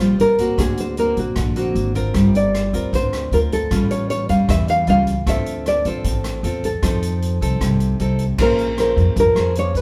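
Straight 4/4 bossa nova at 154 BPM in D minor, intimate and wistful: a dark, woody, fingerpicked nylon-string guitar carries the melody up front over a second nylon-string guitar whose deep classical accompaniment shows audible finger squeak, alongside a thumpy pizzicato upright bass and a natural-sounding drum kit with punchy kick, hi-hat, rim click and crash, the band playing live together in one room with moderate reverb, and then a breathy, distant trombone with light vibrato and a soft attack enters at 8.4 s as the harmony shifts to Bbm9 in this excerpt from a longer piece.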